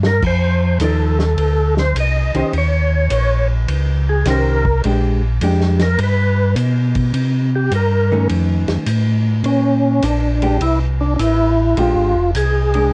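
A swung 4/4 groove at 104 BPM opens with a drum fill at 0.0 seconds, setting up a greasy, bluesy soul jazz organ trio feel in this short cut from a longer piece. A mellow, round tonewheel organ carries the bass line up front, its dark, clean tone colored by chorus vibrato and a slow rotary speaker. The acoustic drum kit sits back in the mix, dry and mid-forward, with dark cymbals, a medium-tuned snare and a tight kick. Over this, a fat, lightly overdriven tonewheel organ takes the solo until 9.5 seconds, with percussive second-harmonic attack, key click, chorus vibrato and slow rotary swirl. A compressed, picked hollow-body electric guitar joins at 0.8 seconds with dark, clean accompaniment, moving through changes such as F13, Cm7 and Faug7 before the passage shifts at 9.5 seconds onto Bb13. The whole recording has light reverb and the worn, warbling pitch drift of old cassette tape, with a muffled top end.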